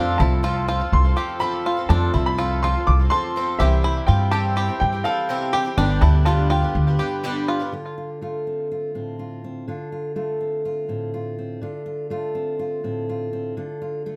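A light reverb gives this anthemic, warm folk excerpt a gentle sense of space, moving at 124 BPM in a straight 4/4 over chords of F, C and G before turning to Dm7. A clear, slightly detuned upright piano carries the melody with short, woody notes and an analog delay, while a felt-muted upright piano sits softly in the background, mellow and intimate, its action noise audible. A boxy, shimmering twelve-string acoustic guitar adds octave-doubled picked accompaniment, and a bright, twangy bluegrass banjo, played with fingerpicks and touched with analog delay, supplies percussive arpeggios. Beneath them, a very quiet brass ensemble holds sustained chords with soft attacks and light vibrato, and a dark, thumpy pizzicato upright bass stays up front until 6.9 seconds. At 7.7 seconds the opening group gives way to a fingerpicked steel-string acoustic guitar with a warm auditorium tone, playing accompaniment through to the end of the cut.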